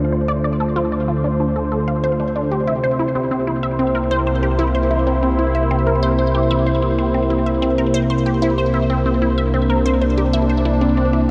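Opening at once with a sweeping, detuned resonant pad holding Dm7 then C7, a juicy, squelchy blip pluck riff carrying a filter sweep through phaser and tape echo, and a nasal, evolving analog drone on bass with chorus, this hypnotic, cosmic piece of sequencer-driven space music at 94 BPM floats in a huge, wet reverb with a dark production, cut from a longer work.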